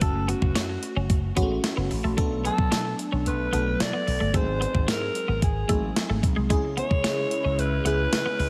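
A growling alto saxophone carries the melody from the start, raspy and up front, over a clean 12-bit drum machine with a thumpy kick, gated reverb and tambourine, a bright slap bass run through an envelope filter, and a dreamy FM electric piano treated with chorus and phaser. This is a moody, urgent 1980s-style pop excerpt at 111 BPM in F# minor, moving through F#m, Bm7, G#7 and C#m, with a compressed twelve-string electric guitar riff sitting in the background under analog chorus and delay. At 6.5 seconds a swirling, detuned sawtooth pad joins with slow-attack sustained chords, all in light digital ambience.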